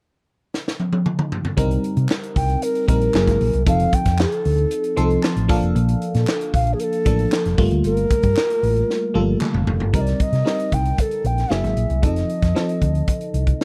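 Polished 1980s jazz-funk pop in C dorian at 115 BPM, this straight 4/4 passage, cut from a longer piece, carries a bittersweet yet slick mood. A crisp fusion drum kit opens with a fill at 0.5 seconds, its high-tuned snare and tight kick sitting up front within a roomy, small-room sound. At 1.6 seconds a dark, round, punchy fingered electric bass arrives with a glassy FM electric piano, whose bell-like attack and vintage warble are colored by subtle chorus, as the harmony moves through Cm7, F#9, F7, Bbmaj7 and Gm9. A breathy, mellow clay ocarina carries the melody from 2.4 seconds with vibrato and softened highs, while a group handclap sits distant in the background until 9.5 seconds. The electric piano adds a fill in the middle, the drums fill again before the closing section returns to Cm7, and light reverb gives the whole mix a touch of space.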